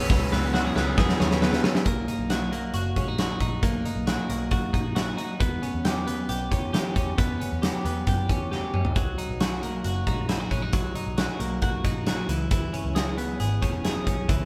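Bright and youthful, this jangly indie pop piece moves at 135 BPM in a straight 4/4, centred on B major and cut from a longer piece. It opens with a short burst in which a bright, overdriven electric guitar sits in the background, a reedy, slightly out-of-tune electric piano is barely audible, and a very quiet string machine voicing violas adds soft-attack, sawtooth sustained chords with an ensemble chorus, all three dropping out by 1.9 seconds. From the start, a clean, compressed twelve-string electric guitar carries up-front arpeggios through tape echo, while a dark, foam-muted vintage bass gives a round, amped low end. The big rock drum kit is up front with a fat snare and punchy kick, opening on a fill and adding another between 8.5 and 9.0 seconds. The chords pass from C#m7 to Bmaj7, then Em6, back to Bmaj7 and on to C#m7, with moderate reverb giving the feel of a band playing live in one room.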